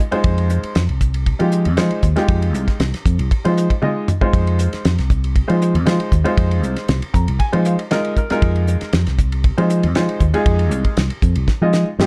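A dry, damped 70s drum kit, a fingered electric bass and a clear baby grand piano all come in together at the start of this short excerpt of funky, slick electric jazz fusion in a straight 4/4. The drums sound acoustic and dry, with a fat snare, a tight kick and dark cymbals on the hi-hat and ride, plus toms, sitting up front in the mix. The bass is direct and amped, with a warm electric tone that anchors the low end and stands slightly louder than the other parts. The piano comps with a natural, short-sustained sound and steps forward with a fill at 6.9 seconds, while the drums drop in fills at 3.8 and 11.5 seconds. The whole excerpt stays on one chord, and the production is close and dry, with a dark, warm overall colour.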